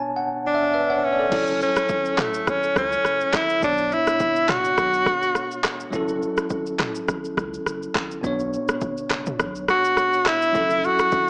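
A clear, forceful tenor saxophone leads this smooth, mellow afrobeats cut from a longer piece, its jazz-style solo lines sung with vibrato, scooped notes and a smooth top, sitting up front in the mix. Underneath, a bright, bell-like tine electric piano plays clean, direct accompaniment through the whole clip and opens with a brief fill before the groove arrives at 1.3 seconds. From there an electronic, layered deep house drum kit with a punchy kick drives the 104 BPM pulse in 4/4 with a light sixteenth-note swing, using crash cymbal, handclaps, rim click, shaker and toms. A deep sine sub bass with a pitch-drop attack holds sustained notes in the background, while the saxophone drops out at 5.7 seconds and returns near the end at 9.7 seconds. The harmony in F# minor sways between Bmadd9 and F#m7, and the whole mix carries light reverb and digital ambience along with the worn, warbling pitch drift and small-speaker character of old cassette tape.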